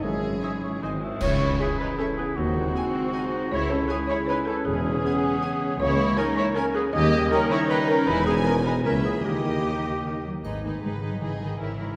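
Magical and mischievous, this playful, whimsical film cue in 3/4 opens with a lush, rich violin section carrying the melody over a dark cello section, a distant double bass section and a very quiet tuba, while a clear clarinet and a dark cor anglais weave second lines and a ringing concert harp spills arpeggios alongside soft, dark French horn chords. A background violin section and a distant viola section join at 0.4 seconds, and at 1.2 seconds a band accent brings bright clash cymbals, concert bass drum and triangle as a woody, rustic marimba takes up the melody alongside the strings. The percussion returns at 10.4 seconds as the harmony settles, everything bathed in a wet concert hall reverb.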